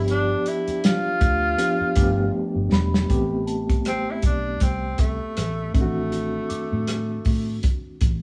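A stone room's moderate reverb and small-room ambience give this excerpt of lush 1970s-style soul the close, live feel of a band playing together in one space. At 79 BPM in 4/4 with a gentle sixteenth-note swing in A minor, the mood is silky and bittersweet, moving through G7, Am9 and D7b9/A. A breathy, whispered tenor saxophone carries the melody up front with vibrato, scooped notes and a soft attack, turning to a solo at 3.1 seconds. Beneath it, a gritty, overdriven reed electric piano with fast tremolo comps through a combo amp, while a dark, foam-muted fingered bass stays round and punchy and a dry, tight drum kit with hi-hat, rim click and a medium-tuned snare sits forward, adding a fill from 2.3 seconds. A mellow, very quiet French horn section holds close-miked chords with light vibrato until 3.1 seconds, and a delicate, bell-like celesta enters at 2.7 seconds, sweet and soft in the background.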